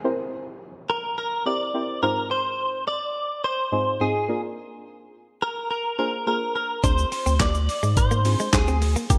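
A clean, direct-recorded electric guitar carries the melody from 0.9 seconds, its picked, compressed notes sitting in the upper register and trailed by an ensemble chorus and digital delay. This short excerpt of driving, energetic dance-pop moves at 106 BPM in a straight 4/4, opening on a deep, mellow chord stab whose detuned, nasal, filter-plucked tone pumps against the sidechain over a faint electronic downlifter in the background. The harmony steps through C7, Fm7/Ab, Bb7 and Dm7b5. At 6.8 seconds the groove fills out: a second clean guitar plays a picked riff with subtle chorus, a thick, saturated sine sub bass pumps underneath, and a gritty, sampler-style soul kit adds a thumpy kick, medium-tuned snare, handclaps, hi-hat and shaker. Light reverb and digital ambience give the whole a bright 1980s-style digital sheen.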